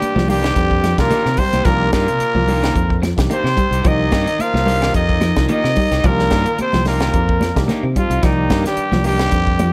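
A gritty, growling trumpet leads this intense, driving afrobeat excerpt at 110 BPM in C minor over a Cm7 vamp, with a breathy trombone and a punchy, very quiet baritone saxophone on second lines, a slightly broken-up electric guitar picking tremolo arpeggios in the background and another adding faint stabs, a barky tine electric piano through a combo amp, a round fingered bass, a tight, dry funk kit with a high-tuned snare, damped congas and woody claves, all in light reverb.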